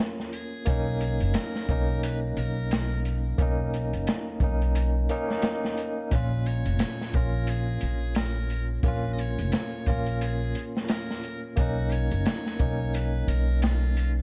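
A barky electric piano through a combo amp, shimmering with tremolo and tape echo, opens this brooding, cinematic trip hop excerpt alongside a crunchy, saturated breakbeat kit with a tight kick and rolled-off top, swinging at 88 BPM over a slow alternation of Bbm and Bmaj7. A buzzy, close-miked trumpet with a metal mute enters at 0.3 seconds, playing a forceful solo melody with vibrato and its own tape echo, while a woody, thumpy pizzicato upright bass arrives up front at 0.7 seconds. A small room reverb and a dark production give the piece its shadowy, intimate feel.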